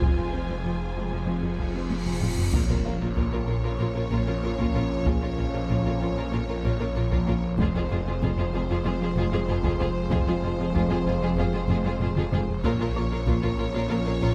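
A snarling, distorted saw bass growls beneath a vast, futuristic hybrid orchestral and electronic film cue, where heavy taiko drums and a huge, bright cymbal swell cresting into an impact at 2.5 seconds bring in a violin melody, mellow French horns, clear trombones and double basses over lush bowed strings, a glassy FM pad, a harp-like synth pluck arpeggio and a faint felt-muted upright piano, as the harmony moves between Fm and Bbm.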